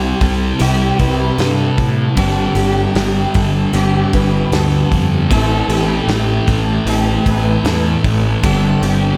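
A dark, up-front thick fuzz guitar with lush chorus drives this hazy, melancholic shoegaze and dream pop excerpt at 77 BPM, joined by a punchy fuzz-overdriven bass, a background crunchy overdriven guitar riff treated with reverse reverb, a bright, shimmering twelve-string acoustic playing octave-doubled arpeggios through analog chorus and delay, and a loose indie drum kit entering at 0.2 seconds, all drifting through C, Gsus4 and Am in a dreamy mix soaked in hall reverb.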